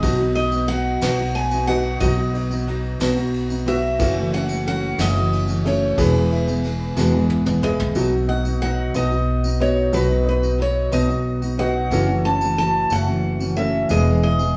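A boxy picked steel-string acoustic guitar carries the melody up front in this hopeful, pastoral acoustic folk excerpt in 6/8, over a full-bodied jumbo guitar accompaniment with finger squeak, clear arpeggios from a worn, slightly detuned upright piano, a woody, growly pizzicato upright bass, and a soft brush kit with dark cymbals and a fat snare that plays a fill at 7.0 seconds and stops at 7.9 seconds, while a jingly tambourine sits in the background and the band plays live in a stone room with moderate reverb.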